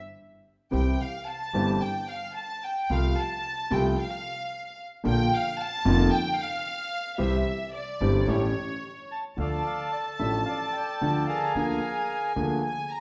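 Passionate and melancholic, this rubato tango excerpt opens with a floating, soft-attack violin section bowing sul tasto over a deep-bassed concert grand piano and a woody, thumpy pizzicato upright bass on gut strings, before a reedy, vintage bandoneon steps up front with the melody at 9.1 seconds, set in a wet, large studio reverb.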